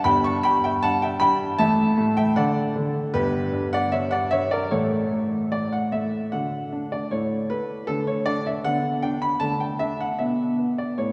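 A cheerful, elegant classical-period piano sonatina excerpt in 2/4, played by a solo grand piano with a smooth, vintage tone sitting up front, spanning G1 to C#6 in a church-like space with a long, wet reverb, its opening section giving way at 6.3 s to a second that settles on a B minor add11 colour near the close.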